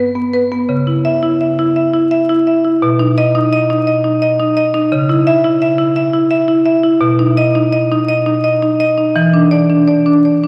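Drenched in a long church reverb with vinyl crackle beneath, this reflective, hypnotic excerpt of a contemporary classical piece for solo marimba moves in a rubato 3/4 at around 85 BPM and is tuned to A4 = 439 Hz, its woody, bright rosewood bars struck with medium hard mallets and placed up front as the harmony drifts from G through C#m and B toward a closing Dsus2/E at 9.2 seconds, across a span from G2 to E5.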